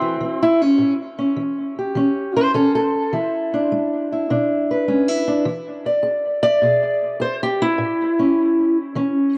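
Swinging eighths at 103 BPM in 4/4 carry this soulful, rollicking acoustic country blues in A major, where a lone fingerpicked steel-string guitar, dark, boxy and parlour-toned, sits up front, moves from A7 to E7 and back to A across 9.4 seconds, and is steeped in dub echo inside a small, lightly reverberant room with a dusky cassette-tape sound.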